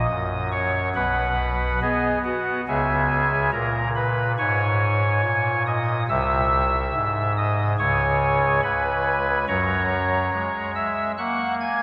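Bathed in a long, wet church reverb, this majestic and reverent 11.8-second classical chorale excerpt features a solo pipe organ whose soft reed oboe stop, with tremulant and baroque voicing, sits up front as it moves through a steady, stately chord progression.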